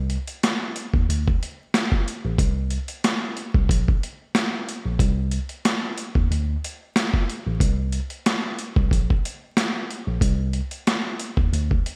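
A mellow, clean tine electric piano carries the bass line from the very start, sitting up front as if heard through built-in speakers, and at 0.1 seconds a compressed, pitched-down sampler-style drum kit joins with a thumpy kick, high-tuned snare and hi-hat, re-recorded in a large room and given gated reverb, driving this reflective, gritty boom-bap hip-hop fragment at 92 BPM in 4/4 with a 55% swing on 16ths, tuned to A4 = 443 Hz, all wrapped in light reverb, a bright 1980s-style digital sheen and vinyl crackle.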